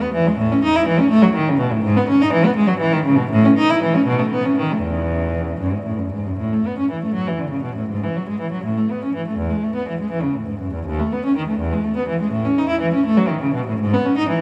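A long, wet cathedral reverb surrounds this recording, with a decay of about 6.5 seconds that lets each bowed note hang in the air. It is a serene, flowing classical piece in the manner of a baroque suite movement for unaccompanied cello, cut from a longer work and lasting about 14 seconds. The music moves in 6/8 at roughly 76-84 BPM counted in dotted quarters, with an elastic, rubato pulse. A single cellist plays up front, with a rich, expressive tone shaped by vibrato, soft attacks and gliding portamento, ranging from D#2 up to E4. The opening phrase sits in E major, and at 6.4 seconds the same material returns, now shifted into A major.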